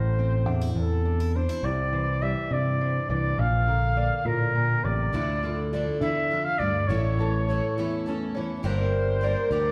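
A mellow trumpet carries the melody up front, its light vibrato and classical phrasing sounding distant and roomy as it plays solo over the band. This bittersweet, wistful indie folk piece moves in a slow 6/8 at 69 dotted-quarter beats per minute, with the chords drifting from Am through Cadd9, Bb and Dmadd9 to A before landing on Gm. A fingered electric bass sits forward with a direct, amped warmth, while a fingerpicked steel-string acoustic guitar adds dark, woody accompaniment with the dull tone of old strings until 8.6 seconds. The arrangement builds as a tenor ukulele enters quietly in the background with fingerpicked arpeggios at 1.6 seconds, followed at 5.1 seconds by a picked twelve-string acoustic guitar whose boxy, octave-doubled shimmer brightens the texture. A brief break comes shortly before the close, and the band, playing live together in one large studio, is bathed in a lush reverb, in a passage cut from a longer piece.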